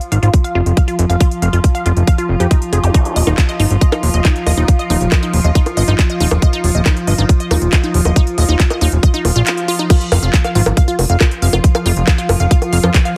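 Psychedelic trance at 138 BPM in a straight 4/4, this excerpt from a longer piece feels hypnotic and alien. A layered kit of bongos, crash cymbal, handclaps and crisp hats plays from the very start, and a tight, up-front electronic kick drives it from 0.3 seconds, while a fat, detuned sawtooth-and-square analog bass with a saturated filter pluck sits thick and forward underneath. A punchy, lush unison pluck carries the riff with a noise layer, a moving notch and filter sweep, cassette-tape colour, delay and sidechain pumping. Behind it, an evolving wavetable pad holds mellow, morphing sustained chords with chorus, its own reverb and pumping of its own, and the harmony settles on Eb5 at 2.9 seconds. A faint electronic zap and a swell sit in the background, the swell building into a brief break at 9.5 seconds before the drop lands at 9.9 seconds. The mix is dry and heavily compressed, with a squashed, radio-like sound.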